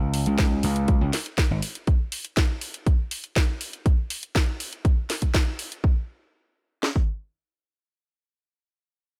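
This short excerpt of nu-disco opens on a gritty slap bass, overdriven and bright, sitting up front with a filter sweep across its first moments before it stops at 1.6 seconds. At 121 BPM in a straight 4/4, the mood is sensual and sleek. A layered electronic house drum kit enters almost at once, one part carrying hi-hat and snare and another adding a punchy kick and a cracking snare, both re-recorded in a small room and placed up front. The hi-hat layer drops out at 5.8 seconds as a new section begins, while the kick-and-snare layer carries on until 7.1 seconds. The sound is dry and close, with little reverb.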